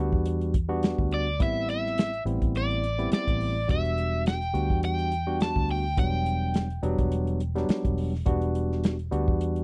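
A barky tine electric piano, lightly overdriven through a combo amp and set up front, opens this soul blues piece alongside a dark, foam-muted fingered electric bass, with a dry soul drum kit joining almost at once on hi-hat, tight kick and medium-tuned snare. The tempo sits at 105 BPM in 4/4 with a straight-eighth feel and a slight swing on the sixteenths, in E minor, as the harmony moves from Em7 to Am7 and back to Em7. At 1.1 seconds an overdriven semi-hollow guitar steps forward with a picked, hollow-body melody in a high range, carrying the soulful, mournful mood until 8.2 seconds. The bass sounds round and punchy, while the drums come across smooth and warm with a rolled-off top, and the piano stays bright. The recording is dry and close in a 1970s studio style with little reverb, and this is a short cut from a longer piece.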